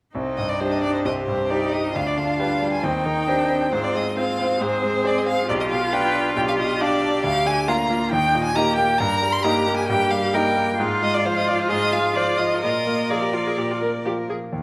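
Set in four beats to the bar with a supple rubato, this quick classical-period movement for piano quartet, cut from a longer piece, feels dramatic and restless. The bright, brilliant grand piano and the viola begin at 0.1 seconds, with the cello just after and the violin taking up the melody at 0.4 seconds. The violin, a single bowed player with a smooth, even line and vibrato, sits up front yet has a slightly distant quality, while the viola shares that rich, vibrato-laden tone in its accompaniment. The cello carries a clear, focused second line in a high register, and the piano, natural in sound and placed up front, spans from deep bass to the middle of the keyboard. Close, detailed microphones capture the ensemble within a moderate recital hall reverb.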